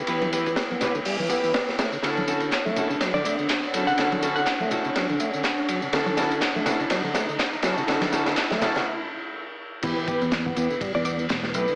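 Gritty and funky, this breakbeat excerpt rides a swung sixteenth-note groove, with a crunchy, saturated acoustic drum kit up front: a punchy kick, a high-tuned snare and dark cymbals in a small room. Layered electronic tambourine and handclaps with a tape-warm tone fill in the kit, while bright, vintage congas sit in the background until they drop out near the end. A fat tonewheel organ with key click and a slow rotary speaker plays a low riff through sampler grit and dub echo, and bowed studio strings add focused stabs with the same grit and echo. In the background, a deep, moody sawtooth pad holds sustained Em and Dmaj7 chords with chorus, phaser and sidechain pumping, and a very quiet electronic riser runs through the build-up alongside a long drum fill. A glassy, crystalline wavetable pluck flickers in with a nasal, telephone-like tone at 3.1 seconds, and after a short break a growly, punchy picked electric bass arrives for the drop at 9.8 seconds, all set in a moderate plate reverb with a small-speaker character.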